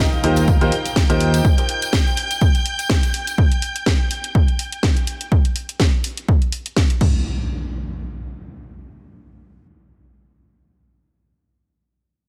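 A dry, punchy mix opens this short piano house excerpt in Eb major at 124 BPM, euphoric and joyful, with a 16th-note swing. An electronic impact sounds over an Eb69 chord while an airy breathy pad and a bright, woody upright piano riff pump with sidechain, the piano trailing digital delay and a fingered electric bass holding Eb2 beneath until the chord drops out at 1.4 seconds. A shimmering vintage string machine of sawtooth violins with ensemble chorus sustains high chords through 5.3 seconds, while a tambourine sits close and dry in the background. An up-front, tape-warm electronic kick and a layered garage kit with cracking snare, bright hats and crash drive on to 7.1 seconds, as a second electronic impact enters at 7.0 seconds and carries the close.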